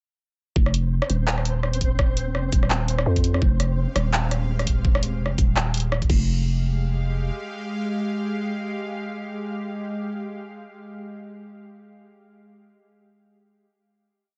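Half-time drum and bass in F minor at 168 BPM with a swung sixteenth feel, heavy and cinematic, opening at 0.6 seconds on an Fmadd9 drop where a growling, buzzy 808-style bass slides through long gliding notes up front, under a knocking layered kick and a sparse half-time kit of bright closed hats, shaker, rim, clap and crash that sound re-recorded in a small room. A flickering, grainy granular texture holds a high note under its own reverb, and from 4.1 seconds a tense, string-like bowed drone with vibrato and pumping sidechain enters beneath the beat. The drums drop out at 6.2 seconds, leaving the bass and then the drone to carry the final hit to 9.9 seconds in an otherwise dry, dark-toned mix.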